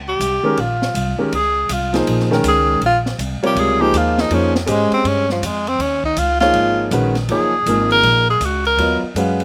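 A clear, punchy tenor saxophone takes the solo up front through this brief modal jazz excerpt, its spiritual, hypnotic line moving at a swinging 161 BPM over a Bbm9 chord before settling into Eb minor on Ebm11 at 5.8 s. Beside it, an intimate baby grand piano with audible action noise comps close by, while a woody, dark pizzicato upright bass anchors the low end. An open acoustic drum kit sits further back with dark cymbals, a high-tuned snare and a boomy kick, and the dry sound carries little reverb.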